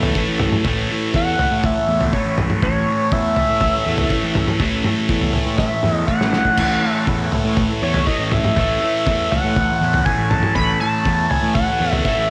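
Psychedelic rock at 121 BPM in 4/4 with a straight feel, this hazy, kaleidoscopic passage in A major is cut from a longer piece. A thick, double-tracked fuzz guitar sits up front with a bright, distorted riff colored by phaser, while a punchy, overdriven fuzz bass rumbles in the background beneath it. A cloth-damped drum kit gives a thuddy, muffled, lo-fi pulse with a fat snare, tight kick, dark cymbals and toms, and it plays a fill from 5.6 to 6.6 seconds. From 1.2 seconds a sync lead carries the melody in an analog synth solo, its sawtooth tone edgy, tearing and evolving, with vibrato, chorus and tape echo. Underneath, a vintage combo organ holds buzzy, clean sustained chords with light vibrato, and a moderate echo chamber reverb adds a lingering, spacious wash.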